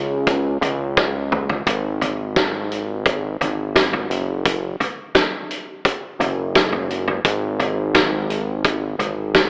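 A straight 4/4 pulse comes from a loose indie drum kit of kick, snare, hi-hat and toms, which joins at 0.3 seconds and plays a quick fill from 1.0 to 1.7 seconds in this hopeful pop fragment, cut from a longer piece. Underneath, a thick, detuned sawtooth analog bass starts alone at 0.0 seconds, with sustained low notes and a fast attack sitting up front. The drums, also up front, bring a fat snare, a punchy kick and a mid-forward, rolled-off top, while light reverb and a worn, warbling cassette tone with AM-radio coloring give the whole recording a warm haze.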